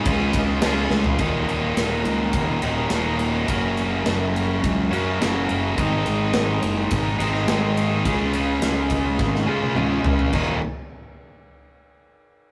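A cranked, double-tracked stack guitar sits up front with a bright, overdriven picked riff in this swaggering, gritty classic rock excerpt at 105 BPM in Eb dorian, moving through Ebm, Gb, Ab and Db before landing on an Eb5 at 10.3 seconds. Underneath, a dark, round fuzz bass growls alongside a big acoustic rock kit with a punchy kick, medium-tuned snare, toms, and crash and ride cymbals, with drum fills at 0.9 seconds and from 9.2 seconds. The rough rehearsal-room sound, tube saturation and moderate small-room reverb give it a raw edge.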